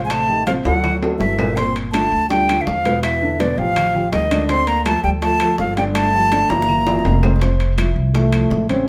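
Sophisticated and lively, this brief Afro-Cuban jazz fragment in F major moves at 164 BPM, with a breathy, close-miked flute carrying an expressive tongued melody over a mellow trombone second line, a dark piano with audible action noise, and a thumpy gut-string pizzicato upright bass up front, while ringing metal-shell timbales, soft-handed congas, tight high-tuned bongos and faint woody claves drive drum fills at 0.7 and 6.5 seconds before the flute drops out at 7.2 seconds and the trombone takes a short scooped, lightly vibrato solo from 7.4 seconds in a live room with a wet studio reverb.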